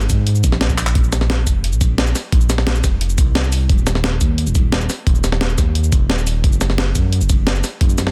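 A smooth, dark synth bass of sawtooth and square waves glides up front with portamento and tube saturation through this lush, dreamy liquid drum and bass fragment, joined by a thumpy, compressed electronic kick and a gritty breakbeat kit of medium-tuned snare, handclaps, hi-hat and shaker, with a drum fill at 0.8 seconds and the mix set in digital ambience under a dense, heavily limited modern master.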